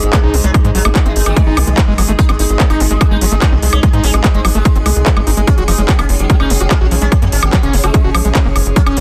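Alien and psychedelic, this cut from a psychedelic trance track drives along at 146 BPM in a straight 4/4, with the harmony moving from G#5 to F#5 at 5.5 s. A heavy, overdriven electronic kick sits up front beside a tight, punchy sequencer bass, whose saturated, wave-folded sawtooth tone has a filter pluck with fast attack and a moving notch. The techno drum kit adds handclaps, smooth hi-hat and woodblock, all run through overdrive. A squelchy, resonant acid bass riff enters at 0.1 s in the background, distorted and echoed with delay. Also in the background, a buzzing, shimmering sitar carries the melody through phaser and delay. Two pads with chorus fill the space, both pumping with sidechain like the sitar and acid bass: an evolving, morphing wavetable pad holding bright, detuned chords with its own reverb, and a breathy, ring-modulated texture pad, all in a dry, dense and heavily limited modern mix.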